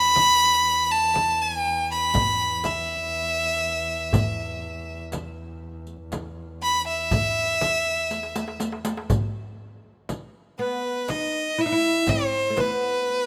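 A clear, up-front bowed violin melody with vibrato opens this stately Arabic maqam ensemble piece in 10/8 over a rich, low double bass drone that drops out at 9.2 seconds, while a deep frame drum and dark-jingled riq struck with hard hands join a crisp metal-shell darbuka to carry the rhythm, and after a drum fill leads into a new section, a mellow, woody fretless oud adds a plectrum-plucked second line from 10.6 seconds, all in a rough, lightly reverberant home-demo sound cut from a longer piece.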